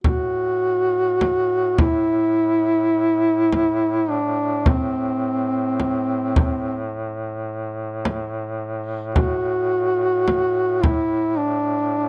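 In a free, rubato 4/4, this mournful, longing Caucasian folk lament sets a dark, smooth-topped duduk up front on the melody, full of vibrato and scooped notes, over a second duduk with a warm, vintage tone holding a low drone in the same ornamented style, while a deep, large frame drum, close and dry and played with hard hands, sits up front until 11.1 seconds in a small, close 1970s-style studio room, the whole cut from a longer piece.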